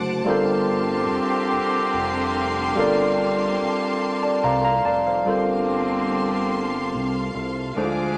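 Sultry and yearning, this slow six-eight R&B excerpt sets a barky, bright tine electric piano up front over lush bowed strings holding sustained chords, a fat, detuned analog bass, and mellow, softly attacked horn stabs entering at 0.3 seconds on a Gm11 chord, all in a small room with moderate reverb.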